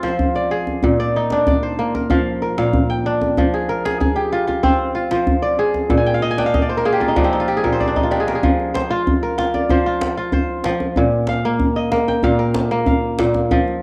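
This West African traditional piece for kora and djembe, taken from a longer performance, moves at 95 BPM in a straight 4/4, with a reflective, flowing mood and tuning pitched at A4 = 442 Hz. The fingerpicked kora sits up front with bright, ringing, crisp arpeggios spanning Bb2 to Ab5, and its tone carries a cassette-tape character. Beneath it, the djembe plays hard-handed with a deep, warm sound in a live room. The harmony alternates between Fm and Bb, and at 8.4 seconds the second section shifts to sparer F5 and Bb5 chords. The kora plays a fill from 6.0 seconds, and the djembe adds its own fill at 7.6 seconds leading into that change. A moderate spring reverb and the homemade cassette recording give the whole piece an intimate, slightly worn atmosphere.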